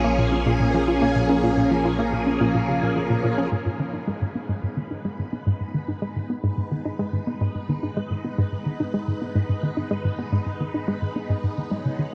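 A hollow, bouncy square-wave pluck sits up front with a detuned, mellow riff, its fast attack and short decay softened by chorus and tape echo. This piece of hypnotic, mysterious space music moves at 108 BPM in a straight 4/4. Beside it, a swirling, bright string machine holds sustained chords through ensemble chorus and phaser. A concert harp rings with thumb-plucked arpeggios in the background, softened by its own tape echo, and it fades in from 3.5 s. A fat, thick analog bass anchors the opening Bb minor chord until 3.5 s, when the music shifts to G# dorian over a G# minor chord. The whole mix is bathed in a huge, wet reverb and carries the worn, warbling pitch drift of old cassette tape.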